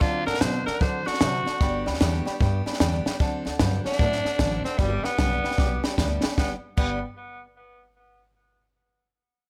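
A rollicking, rowdy rockabilly excerpt opens at once on a raspy, gritty tenor saxophone carrying the melody up front. Around it sit an upright bass, a picked steel-string acoustic guitar, a compact cocktail drum kit and a worn upright piano. The tempo is a brisk 151 BPM in 4/4 with a swung eighth-note feel, in G major, and the harmony moves between D7 and G. The saxophone, breathy and vintage in tone, carries plate reverb and analog delay. The bright, full-bodied dreadnought guitar and the boxy, slightly detuned piano also sit in plate reverb, with the piano placed in the background. The pizzicato gut-string bass is woody and thumpy. The dry kit, placed up front, pairs a punchy kick and high-tuned snare with dark cymbals, and drum fills land at 3.0 seconds and again at 5.6 seconds, where a piano fill joins at 5.8 seconds. A light room reverb and a faint mains hum hang over the recording.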